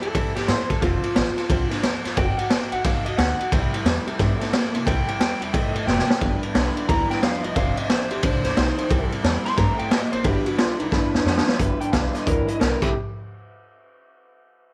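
Upbeat and rollicking, this swung rockabilly excerpt rides on a raw garage drum kit that sits up front, gritty and saturated, with a punchy kick, a medium-tuned snare, a rolled-off top, and fills that kick up dust around 5.9 and 10.9 seconds. An upright bass plucked on gut strings gives a thumpy, woody bottom, while a picked acoustic archtop guitar with old strings picks out chords in the background. The lead is an electric guitar through a small old amp, dark, lo-fi and slightly broken-up, its melody trailed by tape echo. At 3.5 seconds a second electric guitar joins with a twangy riff, tucked into the background and coloured by a vibrato effect. The changes move around C6, F6 and G6 with a passing F#dim7, and light reverb in a small room keeps the whole band close and lively.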